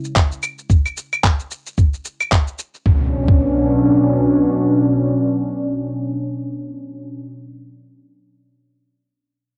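Organic downtempo with a meditative, hypnotic mood and a lightly swung feel, taken from a longer piece. A detuned, warbling vintage analog pad sustains lush chords with chorus, sidechain pumping and plate reverb, while up-front, gritty electronic shaker, handclaps and claves play until 2.8 seconds and a thumpy, compressed kick drum stops at 3.4 seconds, both carrying cassette tape coloring. A soft electronic impact enters at 2.9 seconds as the harmony shifts into the second section, heard in a modest room with a homemade cassette character.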